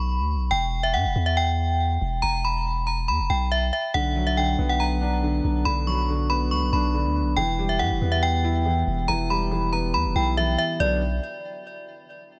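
Ominous and menacing, this half-time drill hip hop passage at 140 BPM in B harmonic minor sets a bright, inharmonic FM bell melody, ringing with chorus, tremolo and delay, over a deep, sine-toned 808 bass that sustains up front, while a soft, felt-muted upright piano with a vintage, intimate tone enters at 3.9 seconds inside a small room with light reverb as the harmony moves between Bm and Em.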